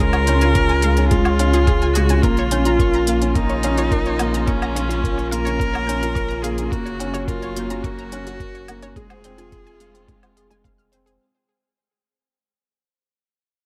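Opening at the drop, a clear, close solo viola carries the melody up front over a felt-muted upright piano riff with audible action noise, a round, deep analog bass and lush symphonic strings holding sustained chords in the background, the strings, bass and a bright, detuned unison pluck playing delayed arpeggios all pumping with sidechain. This hypnotic, moving piano and strings electronica sits at 107 BPM in Bb minor, moving from Db through Bbm, Gb and Fm, with smooth layered electronic hi-hats and woodblock from 0.1 seconds and a muffled, thumpy sampled kick from 0.6 seconds. A fade-out begins at 2.2 seconds and runs to the end of this cut from a longer piece, all in a small room ambience.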